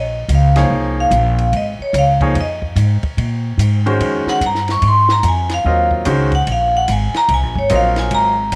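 Modal jazz in Eb dorian, swinging at 146 BPM in 4/4 with a hypnotic, searching mood, this brief cut from a longer piece opens on a vibraphone solo over an Eb9sus4, the medium hard mallets giving a metallic, airy ring shaded by a slow motor vibrato. A woody, thumpy pizzicato upright bass on gut strings sits up front beneath it, a compact cocktail kit with dark cymbals, a high-tuned snare and a punchy kick slips in quietly at 0.3 seconds, and a brilliant grand piano joins the accompaniment at 0.6 seconds. Light reverb and small room ambience keep the dry, natural sound intimate.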